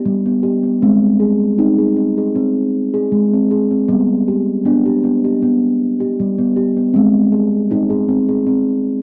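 World meditative tuned percussion, hypnotic and gentle at 78 BPM with a light swing, this nine-second excerpt from a longer piece features a solo steel tongue drum struck with rubber mallets, its round, dark, ringing tones sitting up front between G3 and Ab4 as the harmony rocks between G and Ab, all colored by cassette tape and a short, wet booth ambience that gives it a homemade intimacy.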